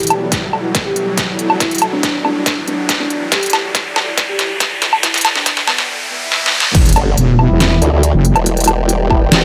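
Aggressive and chaotic, this heavy wobble dubstep cut opens with a build-up in half-time: a soft, felt-muted upright piano with audible action noise carries the melody under a filter sweep and digital delay. A detuned supersaw pad, a blurred granular cloud pad, a riser with swell and impact, a punchy electronic kick and a crisp, up-front drum kit with a deep snare and woodblock surround it. At 6.7 seconds the drop hits with a saturated sawtooth wobble bass, joined by a formant-sweep wobble bass and distant, roomy brass stabs.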